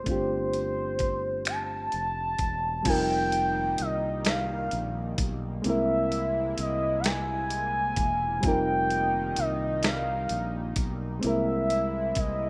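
A slow, straight six-eight R&B groove moves at 43 BPM counted in dotted quarters, carried by a gritty, compressed sampler-style drum kit with a thumpy kick, medium-tuned snare, hi-hat, finger snaps and crash cymbal, sitting up front with the character of a large room. The mood is sultry and yearning, a fragment cut from a longer piece, with a fretless electric bass holding the low end in a warm, direct tone while a reedy electric piano supplies bright, clean accompaniment that sounds as if heard through its own built-in speakers. Over this, a gliding portamento lead carries the melody between C5 and A5, its smooth, detuned blend of sawtooth, sine and triangle waves shaped with a soft attack, vibrato, chorus and a slapback echo, placed prominently in front. At 2.9 seconds a shimmering, retro pulse-width pad enters beneath, its slow-attack chords thickened by a sub octave and chorus as the harmony moves from G9sus4 through F9sus4 to Caug7. 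Light reverb and a rough home-demo mix give the whole a loose, intimate feel.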